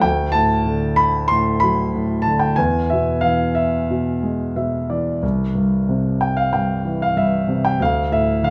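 Rubato phrasing stretches a 4/4 pulse around 93 BPM in this cool, brooding fragment of lyrical classical solo piano, cut from a longer piece. A warm concert grand sits up front with a deep bass, spanning C2 to C6 as the harmony moves from D to E, then C, settling on D minor at 7.8 seconds, with a brief fill between 4.2 and 5.2 seconds. A moderate recital hall reverb gives the piano a natural sense of space.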